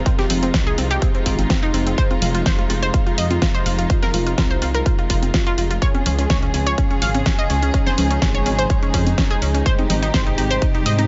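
A punchy, layered electronic kick sits up front and drives this emotional, expansive progressive house excerpt, dropping out at 10.7 seconds, while a big-room kit adds hi-hat and a huge snare and dry congas tick away in the background. Beneath it, a deep, rumbling detuned saw bass anchors the low end while a dark, woody bowed string section holds sustained Fm7, Db and Abmaj7 chords, both pumping against the kick. A round, bright analog pluck spins arpeggios through chorus, delay and gritty 12-bit sampler colour, all in a dry mix with a rolled-off top end.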